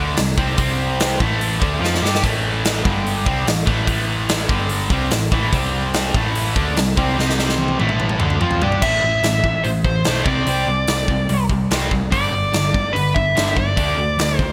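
A cranked stack guitar drives this aggressive, menacing hard rock excerpt, its bright, overdriven riff double-tracked and up front with a subtle chorus as it shifts among C5, A5 and G5 power chords. Beneath it, a hollow-body short-scale electric bass plays picked lines that sound dark, round and punchy. A big rock drum kit enters at 0.2 seconds, acoustic and natural in a large room, with a punchy kick, medium-tuned snare, bright cymbals and toms, all soaked in gated reverb, and a drum fill from 7.2 seconds leads into the next part. At 8.8 seconds a nasal lead guitar with a parked wah joins up front, playing an overdriven picked melody over a move through Am, Csus2, G5 and D5. The whole mix sits in a moderate plate reverb with a bright 1980s-style digital production, and the passage is cut from a longer piece.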